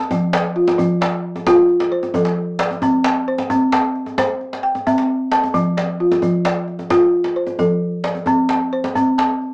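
A balafon opens this short cut from a longer West African traditional piece, playing woody, dry arpeggios with soft rubber mallets that sit round and up front. A moment later a djembe joins beneath it, its deep, hard-handed tone carrying a buzz of metal rattles and the air of a live room. The mood is warm and joyful, set in a flowing 12/8 with a straight feel. The balafon's figures ride a simple harmonic path from F to C and back to F before the harmony drops away near 8.3 seconds, and both instruments play on until the clip ends at 9.5 seconds. A modest small-room reverb and a small-speaker character give the recording an intimate, boxy quality.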